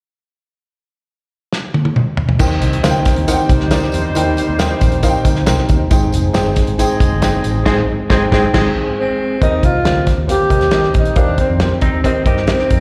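A drum fill on a fat-snared, dark-cymbaled kit opens this joyful 1960s-style soul excerpt at 1.5 seconds, and at 2.4 seconds the band arrives: a round, foam-muted electric bass, a woody, slightly detuned upright piano, a jingly tambourine, and a lightly overdriven tonewheel organ with key click and slow rotary speaker sustaining chords in the background. From 3.3 seconds, a tight, distant horn section plays a second line with slapback echo, and a hollow-body electric guitar with harmonic tremolo adds a riff during the band accent and again near the end. From 9.0 seconds, a breathy, intimate tenor saxophone takes the melody with subtone and scooped notes, all heard as a live gig through the venue's PA in a recital-hall reverb.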